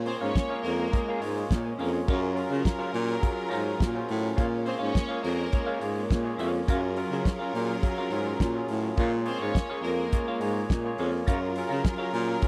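A straight disco groove in 4/4 drives this celebratory, glamorous fragment of a longer piece, anchored by a damped 1970s drum kit with a tight kick, fat snare and hi-hat, sitting dry and up front with a rolled-off top. Beneath it, a breathy baritone saxophone carries the bass line in an intimate, whispered, close-miked pop style with soft attacks and vibrato. A barky tine electric piano, bright and lightly overdriven through a combo amp, and a dark, clean semi-hollow electric guitar treated with phaser fill out the accompaniment. A close, lush string section holds sustained chords throughout, while a more distant, focused violin section adds a second line in brief bursts starting at 0.1, 4.7 and 9.3 seconds. The harmony alternates between Bbm7 and Gbmaj7, all captured in a dry, small-room sound with a close 1970s studio character.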